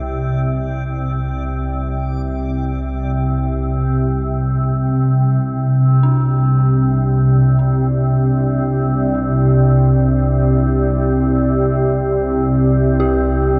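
An ominous, unsettling dark ambient drone in free time opens on a calm, organ-like low drone up front, with an eerie, inharmonic synth bell playing arpeggios in the background and a reversed, swelling, bright texture that lasts until 1.8 seconds. From there the bell gradually fades in, its chorus and delay adding shimmer, and at 5.0 seconds a deep, moody pad with a detuned sawtooth edge and sub octave enters with sustained chords over the Csus2 harmony. A cathedral reverb gives this fragment of a longer piece the feel of a vast, echoing space.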